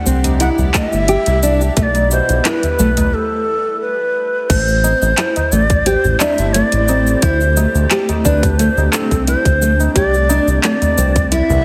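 A straight 4/4 pulse at 88 BPM drives this meditative organic downtempo excerpt in A dorian, where a breathy, bright low ney with vibrato and 12-bit sampler grit leads up front over a fingerpicked nylon-string guitar with finger squeak and delay, filter-swept up to 4.5 seconds, a round, deep analog bass and a blurred granular cloud pad both pumping to the sidechain, an overdriven deep house kit with metallic hats, cabasa, handclaps and crash, a tight, tape-warm electronic kick entering at 0.7 seconds, and high-tuned, ringing tabla in the background, with a break from 3.1 to 4.5 seconds and the whole mix set in a moderate recital hall reverb with a heavily compressed radio sound.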